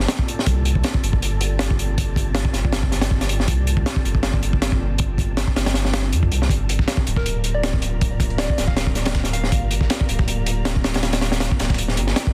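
A crunchy, up-front breakbeat kit with a punchy kick and high-tuned snare drives this nostalgic, atmospheric drum and bass excerpt at 159 BPM in G minor, over a deep, saturated sub bass and a breathy, wind-like noise texture in the background. A very quiet, dusty sampler-style kit joins at 6.5 seconds as the harmony moves from C9sus4 to Gm9, and a round, warbling FM lead with chorus, tape character and dub echo appears briefly at 7.2 seconds.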